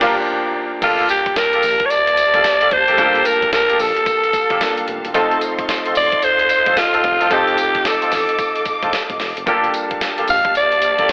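The clip opens on a short band accent, with piano, strings, horn section, bass and drums hitting together before the breathy alto saxophone enters at 0.8 seconds to carry the melody. This is punchy, bouncy new jack swing R&B with a swung sixteenth-note feel, moving from Gm7 to Gm9, then to F7 at 5.1 seconds and back to Gm9. The saxophone sits up front, raspy and edgy, with vibrato and scooped notes in a pop style, while a clear, polished baby grand piano supplies accompaniment and a mellow, vintage horn section adds jazz-style stabs with light vibrato. Lush studio strings hold sustained bowed chords with portamento in the background, and a round, dark analog bass stays low underneath. The sampler-style kit is gritty and compressed, with a thumpy kick, a medium-tuned snare, hi-hat, crash cymbal and tambourine. The mix sits in a moderate echo-chamber reverb with a telephone-like sound, and the recording is cut from a longer piece.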